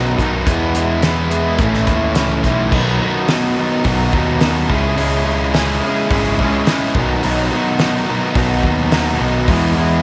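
The thick fuzz guitar stands out most, sitting up front with a bright, distorted riff while a raw garage guitar plays its own overdriven riff beside it, coloured by subtle chorus and slapback echo. This is a jangly, carefree indie rock cut taken from a longer piece, moving at 106 BPM in a straight 4/4 and centred on B mixolydian. Underneath, a fuzz picked electric bass adds a punchy, overdriven low end. A loose indie drum kit comes in at 0.2 seconds with a fat snare, a punchy kick, hi-hat and crash, its dark cymbals and pumping room sound giving the beat a live, acoustic feel. After an opening passage that moves from E to A, the harmony shifts at 2.7 seconds into a stretch built on B7 and C#m before landing back on E. A light reverb and small room ambience keep the whole thing close and scrappy.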